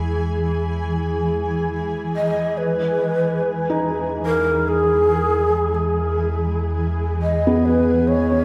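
A breathy, hollow shakuhachi sits up front, entering at 2.2 seconds with a crisp chiff, vibrato and rolled-off highs as it carries the melody through this luminous, peaceful ambient excerpt in E major, set at 71 BPM in 3/4. Beneath it, a bright, cloudy granular pad holds slow-blooming sustained chords built from detuned sine and sawtooth layers, while a deep, ominous rumbling drone anchors the bass with a phaser colouring its dark tone. A very quiet glassy texture of drifting overtones shimmers at the top until 2.6 seconds, where the harmony moves from E to Emaj7 and the drone begins a long fade-out. From 3.7 seconds, a felt-muted upright piano adds soft, intimate arpeggios with audible action noise, its dark tone echoing through analog delay like the shakuhachi's. A wet spring reverb and an echo-heavy mix wrap the whole piece in a drifting, spacious haze.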